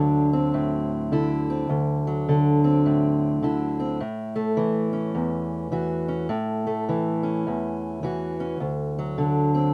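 A fingerpicked steel-string parlour guitar plays alone from the start, its boxy body and fresh strings sitting up front with audible finger squeak. This short swaggering, laid-back blues moves in a swung 4/4 from D7 to A at 4.0 seconds and back to D7 at 8.6 seconds. A light reverb gives the room a touch of air.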